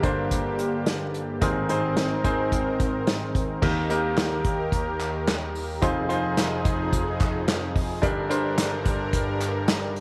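Uplifting and warm, this piano-driven pop passage, cut from a longer piece, moves at a steady, straight pulse in common time. A bright concert grand carries the accompaniment up front, its brilliant, polished tone resting on deep bass notes with a short sustain. Alongside it, a lush unison pad holds sustained chords, its thick, nasal sawtooth sound detuned and given a chorus effect, with a soft attack and long release. An acoustic drum kit played with bundle sticks sits close in a studio room, pairing a punchy kick and medium-tuned snare with dark cymbals across hi-hat and crash. At 4.2 seconds a hollow group handclap joins from the background, distant and set in a large room, until 9.8 seconds. The harmony moves from Gm through Abadd9 to Eb, Fm7 and back to Gm, all framed by a moderate plate reverb and a small room reverb.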